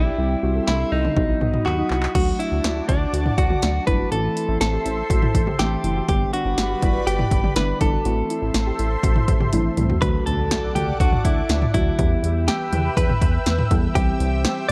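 Nocturnal and cool, this synth-pop excerpt moves at a steady, straight four-beat pulse under a dark production with light reverb and a digital ambience. A clean, direct-recorded electric guitar carries the melody up front, its picked, compressed tone marked by a warbly pitch drift. Beneath it, a lush, thick unison pad holds detuned chords through chorus and phaser, while muted, felt-like synth keys add intimate, soft accompaniment and a glossy, chorused synth bass anchors the low end. A round, gentle pluck traces arpeggios in the background through tape echo until it stops at 10.0 seconds. A punchy analog drum machine enters at 0.7 seconds with tape-warm kick, snare, handclaps, hi-hat, toms and crash, rolling through fills before the last section opens at 10.0 seconds with a very quiet electronic impact.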